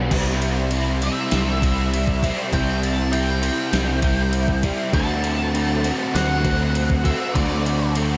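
Blissful and dreamy, this short shoegaze and dream pop cut is soaked in a lush hall reverb, with an overdriven, double-tracked semi-hollow guitar riff sitting up front with ensemble chorus and a bright, punchy picked electric bass holding the low end. A gated 80s digital drum machine brings a thumpy kick, gated reverb snare, crash and ride cymbals, overdriven and re-recorded in a small room. From 1.0 seconds a dark octave-fuzz lead guitar carries the melody high above, coloured by distortion and tape echo, as the harmony moves from C to D7 at 4.9 seconds.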